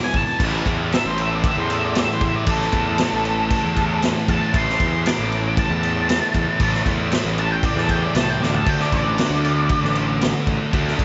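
A dark, distorted octave-fuzz lead guitar with slapback echo solos over this brooding, gritty blues rock and southern rock power-trio passage at 116 BPM in A minor, ending at 9.9 s. Beneath it, a bright, double-tracked thick fuzz guitar riffs up front and a growly, overdriven picked electric bass holds the low end. The harmony moves through A5 and D5 chords, a punchy vintage acoustic drum kit with a rolled-off top plays a fill at 8.4 s, and the mix sits in a lush hall reverb with a big arena sound.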